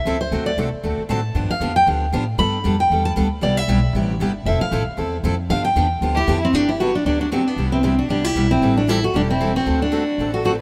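Light reverb frames a charming, lively stretch of swinging acoustic string jazz manouche, cut from a longer piece. A warm, up-front picked dreadnought guitar with fresh strings carries the melody as a solo through the first 6.5 seconds over thumpy, woody pizzicato upright bass and a second bright picked guitar, whose accompaniment shows audible finger squeak as it moves through seventh and add9 chords. At 6.1 seconds a single bowed violin joins with a clear, biting second line marked by vibrato and an airy bow.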